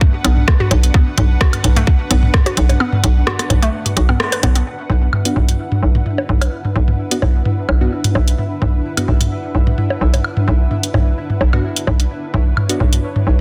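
Minimal techno at 129 BPM in B minor, clinical and quirky, with a tight, up-front electronic kick that stops at 2.4 seconds, while a garage kit with warm hats, rim clicks and a soft-clipped snare joins dry, tape-warm electronic toms, woodblock and bongos. A hollow, knocking FM bass pumps on B1 beneath a detuned square pluck riff with chorus and digital delay, all over a blurred, evolving granular cloud pad. A pulsing, tempo-synced triangle texture drifts in at 4.7 seconds, and at 5.3 seconds a crisp, bright wavetable chord stab arrives in the background with dub echo and a filter sweep, all in a dense, heavily limited mix with light digital ambience.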